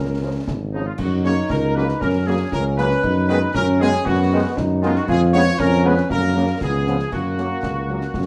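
A dark, warm production sets this short cut from a longer piece in a large studio with moderate reverb. It is a proud, festive military-style march for wind band in F# major at 117 BPM in a straight 2/4. A trumpet section carries the melody in a classical style, while a clear woodwind section with a smooth top and a solo euphonium play a second line. Up front, a mellow solo tuba holds the bass with light vibrato and soft attack; from 0.2 seconds, a very quiet, close-miked French horn section adds accompaniment as a distant trombone section sustains chords in the background. Concert snare drum, concert bass drum and clash cymbals join at 0.5 seconds, acoustic and set in a small room, with dusky cymbals, while the chords move from C# to F# through G#m7/F#, C#7/E# and C#7 before returning to F#.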